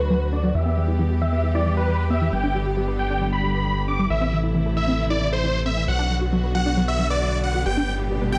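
A light reverb frames this euphoric, uplifting trance excerpt in a straight four, where a huge, bright supersaw lead carries the melody through phaser, delay and a filter sweep that runs across its full length, over soft-attack string chords with a sul tasto intimacy. Beneath them, a tight, detuned sequenced synth drives mellow arpeggios in the background, while a gritty, nasal, distorted bass sits up front with aggressive force. Over a progression moving through Em, G, Am and Bm, an electronic riser enters at 8.0 s in the final moments.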